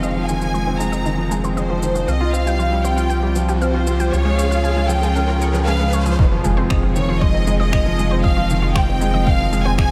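A straight 4/4 pulse at 117 BPM drives this melancholic, moving piano-and-strings electronica in F minor, tuned to A4 = 438 Hz and set in a moderate concert hall reverb. Overdriven electronic shaker and finger snaps tick along from the start beneath a felt-muted upright piano riff that sits up front. The piano is soft and intimate, with audible action noise, and carries delay and shimmer reverb. A round, dark analog bass with a fast attack pumps with sidechain beneath it. In the background, a bright, nasal analog pluck plays arpeggios through chorus, delay and shimmer reverb, its filter sweeping during the build-up, while a clear studio string section holds bowed chords and an earthy, close violin section carries the melody with light vibrato. A riser enters at 1.4 s, and at 6.2 s the drop lands with an impact and a deep, layered, overdriven electronic kick drum as the harmony cycles from Fm7 through Csus4 and Db back to Fm7.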